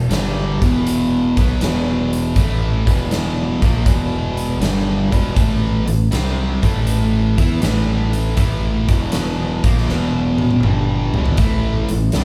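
A sludgy, bright, double-tracked overdriven guitar riff sits up front in this raunchy, swaggering blues rock power trio excerpt with a southern rock edge, swinging at 80 BPM over Em7 and Am7 while a growling, overdriven fingered bass rumbles beneath and a big acoustic rock kit with a tight kick and medium-tuned snare rings in a stone-room space, rolling into a drum fill from 9.9 to 11.4 seconds, all captured live in one room with faint mains hum and moderate studio reverb.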